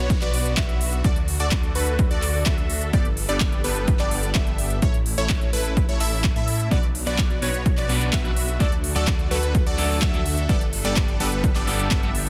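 A dry, tightly produced mix opens this anthemic, powerful slice of festival progressive house, cut from a longer piece and driving at 127 BPM in a straight 4/4 through a chord cycle of Bm, D, Gadd9 and A. Up front, an overdriven, punchy electronic kick leads the rhythm, joined by a big-room dance drum kit with crisp hats and handclaps that has a tape-warm character and the air of a large room. A thick, lush detuned saw bass with chorus anchors the low end. Above it, a detuned supersaw stab riff with phaser and dub echo and a catchy plucky unison lead playing arpeggios with vibrato and dub echo carry the hook, all pumping against the kick. A bright symphonic string section holds sustained chords in the background, and a very quiet downlifter sweeps through the opening 2.9 seconds. At 6.7 seconds a slightly broken-up, scooped electric guitar enters with picked accompaniment bathed in spring reverb, adding grit to the second pass of the progression.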